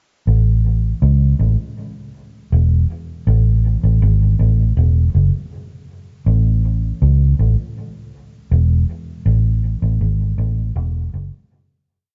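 Touched by light reverb and rolled off in the highs, this short, laid-back, spacious dub reggae piece sets a lone vintage electric bass up front, its foam-muted, fingered tone dark, round and amped. The bass plays alone from 0.3 seconds, tracing a deep, melodic reggae line with rests through the low register, before the recording fades out from 9.3 to 12.1 seconds.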